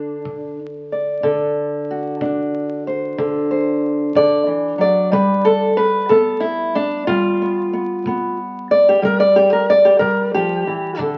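Rolling in a slow, laid-back 12/8 at 61 beats per minute, this short excerpt of acoustic country blues in G major sits on a D7 before moving to G7 at 5.1 seconds, with a tight kick drum played with brushes tucked in the background throughout. Up front, a fingerpicked old ladder-braced acoustic guitar carries the melody as a solo, its old strings giving a dark, woody, boxy tone. Moderate studio reverb surrounds the duo, and the sound of a very old 78 rpm record, with vinyl crackle and a muffled top end, lends the performance a gritty, aged character.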